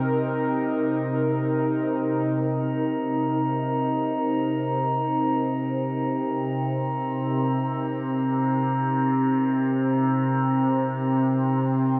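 Serene and reflective, this ambient excerpt drifts in free time in C minor, resting on a single Cm7 chord. A warbly, tape-like pad sits up front, holding sustained chords between C3 and Bb4 with a nostalgic, lo-fi character, its detuned sawtooth and triangle tones softened by chorus and slow, lingering attacks and releases. Beneath it, an overtone-sweeping drone spanning C3 to C4 adds resonant, moving harmonics, its bright edge shaped by chorus and phaser. At 2.4 seconds a glass harmonica enters high between Bb5 and C6, laying a pure, ethereal texture over the bed. The whole excerpt floats in a huge, wet reverb with a long decay, giving the dark, warm production a vast, enveloping space.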